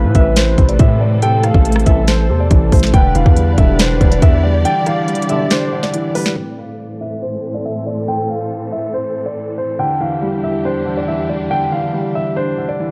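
Menacing and melancholic, this dark, warm trap cut moves at 140 BPM in a half-time 4/4 feel in A minor, drifting between Am and Em7 in a small room. A dark grand piano carries the melody throughout, its mellow, vintage tone softened by a low-pass filter and touched with audible action noise, while a felt-muted upright piano adds intimate accompaniment beneath it. A dark symphonic string section holds lush, bowed chords with expressive vibrato for the full 12.9 seconds, and a velvety synth lead with chorus and delay traces a second line through the opening half. Up front, a trap kit with a hard-clipped kick, sharp snare and crisp hats drives the first section alongside a heavy, saturated 808-style bass, as a mellow brass ensemble sits in the background with classical-style stabs. The bass drops out at 4.7 seconds for a break, and from 6.4 seconds the drums fall away, leaving the grand piano and strings under a filter sweep, with the upright piano returning at 9.8 seconds, until the piece is cut off.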